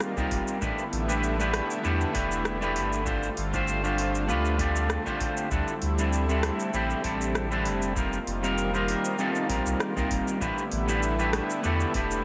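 An up-front electric guitar at the edge of break-up sits at the front of this relaxed sunset chillout excerpt, its twangy, fingered tone carrying a touch of grit and trailing echoes from a delay as it plays accompaniment over suspended ninth chords. Beneath it, a lush unison pad built from detuned sawtooth voices holds sustained chords with a slow attack and long release, its warbling vintage character thickened by chorus. A smooth R&B drum kit supplies metallic hi-hats, rim clicks and shaker with an overdriven edge and a small-room ambience, set in a gently swung 4/4. From 0.2 seconds a round sine sub bass with tube saturation and a deep, tape-flavoured electronic kick join to anchor the low end. Light digital reverb wraps the whole in a soft, easygoing glow.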